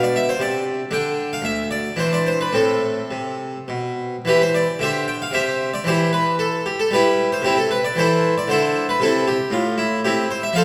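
Set in a wet scoring-stage space with a 2.0-second reverb tail, the recording places the listener further back in the room, while the harpsichord itself still sits up front. This brief cut from a longer baroque-style suite movement for solo harpsichord unfolds in A minor at a grave, solemn pace of about 103 to 118 BPM in 3/4, with a flexible, rubato feel. The instrument is a French-style harpsichord with two sets of strings, giving a full, airy, plucked tone across a range from D2 to G5. The opening phrase drifts from Cmaj9 over B through a chordless moment and Cmaj9 over E before settling on A minor. A second statement of the same material begins at 4.3 seconds, passing through C, Emadd11 and Am/C before resolving back to A minor at 9.0 seconds.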